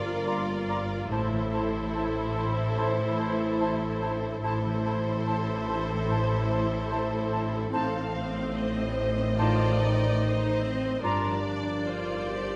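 In a rubato 4/4 around 72 BPM, this sorrowful, longing cinematic excerpt has lush vibrato violins carrying the melody over a clear, intense second violin line, with smooth violas, distant horns holding sustained chords, a quiet ringing harp playing arpeggios, and a rich bowed bass of cellos and double basses, while an airy silver flute, a mellow cor anglais and a very quiet breathy clarinet join at 0.3 s with second lines, all moving from Gm7 through Am and Adim and back to Gm7 in a moderate scoring-stage reverb.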